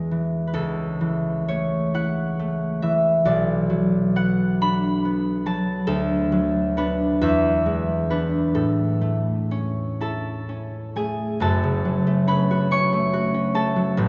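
Swaying in a rubato 6/8, this serene, dreamy classical excerpt for solo concert harp has a warm, ringing, fingerpicked sound, heard from further back in a wet cathedral reverb, as its chords move from E through A/C#, Bm and E7 to settle on A before turning to F#m when a new section begins at 11.4 seconds.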